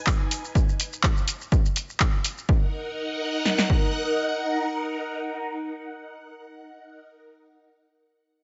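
Riding a 124 BPM groove with a light 16th-note swing, this short, sunny, funky slice of filtered disco house in F# major opens with a drop where a punchy analog drum machine kick and snare, re-recorded in a large room and up front, run until 3.8 seconds, joined by handclaps, hi-hat and shaker that pump against the sidechain and fall away at 2.5 seconds. A very quiet, vintage egg shaker flickers only in the first half-second. Above it all, a swirling, bright string machine holds sawtooth chords with slow attack and long release through ensemble chorus, phaser and sidechain pumping for the full 7 seconds, moving from B6 to F#6 in a dulled, lightly reverberant mix.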